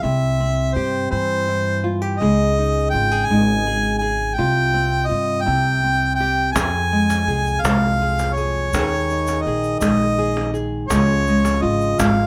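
A clear, up-front harmonica with light vibrato takes a classical-style solo over fingerpicked, warm nylon-string guitar and thumpy, woody pizzicato upright bass in this haunting, intimate acoustic folk excerpt in 6/8, with a distant hard-handed cajon with faint snares and a grainy, bright tube shaker in the background joining at 6.6 seconds, all under light reverb.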